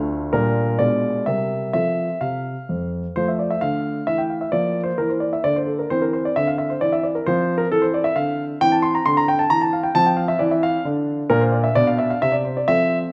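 A graceful, elegant classical-period piano sonatina excerpt in F major, moving at 132 BPM in a straight 3/4, where a solo grand piano with a polished, up-front presence plays from D2 to C6, passing through Gm7/Bb, Bdim7 and C7 to settle on F by 1.7 seconds before a longer second section from 3.2 seconds leans on Bbadd9(#11), C and open F5 sonorities, all carried by a moderate recital hall reverb.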